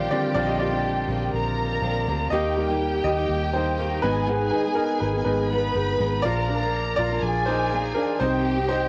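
Captured at home on cassette in a booth with a short, moderate ambience, this hopeful, anthemic pop excerpt moves at 122 BPM in a straight 4/4, in Eb major tuned to A4 = 438 Hz. Up front, a clear, intimate grand piano with audible action noise carries the accompaniment and takes solo turns through the opening passage and again from 2.3 seconds, its natural tone colored by cassette tape and plate reverb. Also up front, a lush symphonic violin section plays a bowed second line with vibrato, focused and smooth on top, under the same tape and plate reverb treatment. A picked steel-string acoustic guitar plays a riff with a concert tone from further back, touched by cassette tape, while a dark, round, foam-muted electric bass with an amped vintage character holds the low end. The harmony moves from Bb6 through Eb, Abm and Bb before arriving on Cm at 8.2 seconds.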